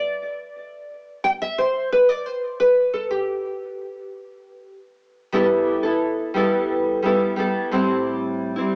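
A dark, full-bodied nylon-string guitar, fingerpicked up front with a deep classical tone, carries this mellow, wistful indie pop excerpt alone, its lush chorus, warbly pitch drift and tape echo soaked in a small, wet room and the hazy cassette character of a home recording heard through a small speaker, moving from an unaccompanied opening into a second passage at 5.3 seconds that settles on G69 before turning to Am7 at 7.7 seconds.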